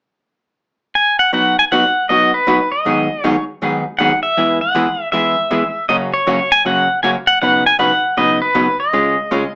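A clean, compressed electric pedal steel guitar sits up front from 1.0 seconds, using fingerpicks, slide and volume swells to carry a playful, swinging country melody, while a dark, picked hollow-body archtop guitar, miked and amplified, joins at 1.3 seconds with up-front accompaniment over chords moving from B through G#m7, E and F# to Badd9 and C#, all heard through a small speaker sound in a moderate club reverb in this short excerpt cut from a longer piece.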